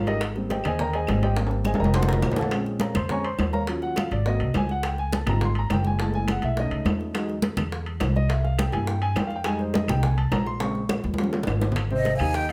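A straight 4/4 groove of ringing congas, tight high-tuned bongos, vintage metal-shell timbales and woody background claves drives this sunny, sophisticated Afro-Cuban jazz excerpt, where an up-front, natural grand piano solos through rich jazz harmony over a thumpy pizzicato upright bass, with drum fills near 1.4 and 10.6 seconds, before a breathy flute and a delicate, bell-like celesta enter at 12.0 seconds, the whole mix set in a wet club reverb.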